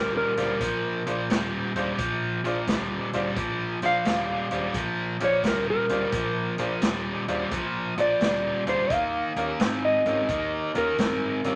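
A swung shuffle in 4/4 drives this soulful, gritty electric blues excerpt, where a dark, clean, fingered electric guitar carries the melody through a harmonic tremolo over an up-front overdriven guitar riff bathed in spring reverb, a round, foam-muted bass sits in the background, and from 0.4 s a woody, brilliant upright piano accompaniment and a punchy vintage kit of hi-hat, kick and medium-tuned snare join in, all riding a Bb9 groove that moves to Eb9 at 8.9 s in a moderate studio room.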